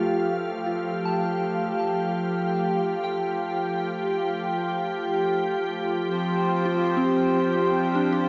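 A detuned, organ-like pad holds sustained chords up front, thickened by ensemble chorus and its own reverb. Set in the background, a soft FM synth bell traces gentle arpeggios through chorus, phaser and tape echo, while an ethereal glass harmonica adds a beating, glassy texture. At 6.1 seconds a reedy, breathing hand-pumped harmonium joins up front with a low drone as the harmony moves from Fadd9 to G7sus4/F, all bathed in a huge, wet reverb that gives this ambient fragment of a longer piece a weightless, warm mood.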